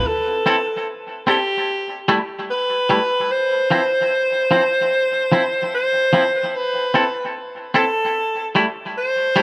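A breathy alto saxophone opens this sweet, smooth reggae excerpt at 74 BPM in C major, with a clear, jazz-style solo voice carrying a soft attack and light vibrato. Its intimate, whispered tone sits up front yet feels distant and roomy, colored by tape echo. At 0.5 seconds a twangy electric guitar joins with clean, fingered stabs that sound compressed and up front, treated with harmonic tremolo and its own tape echo. The harmony moves from C6 through G69 and F5, returns to C6, and closes on Gsus24 as the fragment ends at 9.4 seconds. A moderate spring reverb lends the whole mix a gentle, lingering glow.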